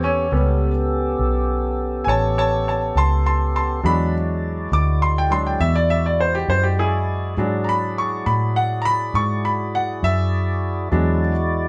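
Caught live in one room with moderate studio reverb, this brief cut from a longer slow blues in 12/8 feels gritty and laid-back. A clear, intimate baby grand piano sits up front and takes the solo, its audible action noise adding a natural closeness, before it stops at 11.3 seconds. Beneath it, a fat tonewheel organ holds sustained chords through a slow rotary speaker, and a dark, round, foam-muted electric bass sounds amped and present as the harmony moves from A9 to E9 at 3.8 seconds.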